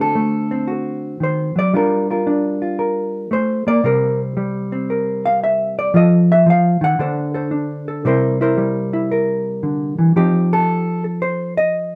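A lone hollow-body jazz guitar opens this swinging, relaxed solo jazz excerpt, its clean, dark electric tone fingered and placed up front with a light reverb around it. Moving through a chain of seventh chords from D7 and Gm7 to F7 and C7, the guitar carries the solo through the first 10.1 seconds before the passage shifts into a new section that arrives on F7.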